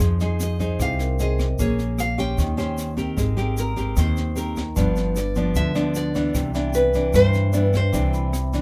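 A brisk, romantic bossa nova at 151 BPM opens with a bright, fingerpicked nylon-string guitar comping over a woody, growly pizzicato upright bass up front, a dark brushed drum kit with a boomy kick and high-tuned snare, and a grainy tube shaker tucked in the background. At 0.4 seconds a second nylon-string guitar, warmer in tone and up front, takes the breezy melody, while a mellow, ringing vibraphone with soft mallets hovers behind from 0.6 seconds and returns at 4.8 seconds. The harmony moves from Fm7 through Bbm9, Eb6 and Abmaj9 to G7 and Cmaj9, all in an intimate, nearly dry space.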